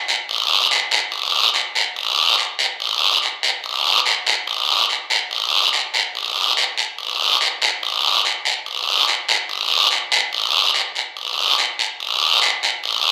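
Latin percussion at 143 BPM in a straight 4/4, sultry and warm in mood, cut from a longer piece. A raspy acoustic guiro sits up front, entering at 0.1 seconds and playing through to 13.1 seconds. It is heard with a live room character and moderate studio reverb.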